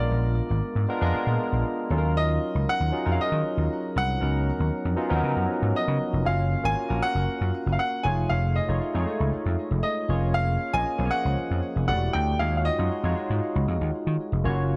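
A clear baby grand piano melody opens over a barky tine electric piano with analog chorus and a punchy, amped slap bass in this glossy, urban 1980s jazz-funk pop passage at 117 BPM in straight 4/4, tuned to A4 = 439 Hz, moving from A#7b9 and D#m9 into a second section at 6.3 seconds built on F#maj7, F7alt and Em11 with light small-room reverb, the piano falling silent at 13.1 seconds as the electric piano and bass carry the clip to its end.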